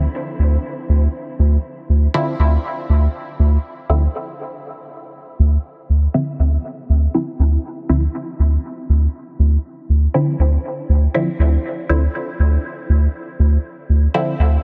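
A round, dark analog bass sits up front from the first second beside muted, detuned dub chord stabs treated with phaser, cassette tape and dub echo, and a brief break arrives at 4.1 seconds in this cavernous, hazy dub techno fragment cut from a longer piece, set in light digital ambience under a dense, heavily limited master.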